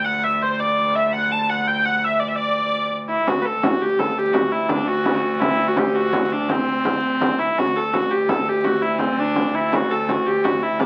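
Heard through the crackle and lossy blur of a very old 78 rpm record, with the reverb of a small room, this fragment of a festive, rustic medieval dance moves in 6/8 at 112 BPM in D mixolydian. A nasal, reedy hurdy-gurdy carries the melody up front over a distant, ringing viola da gamba drone on D2, which has a gut-string tone and light vibrato. A frame drum played with soft hands joins at 3.3 seconds.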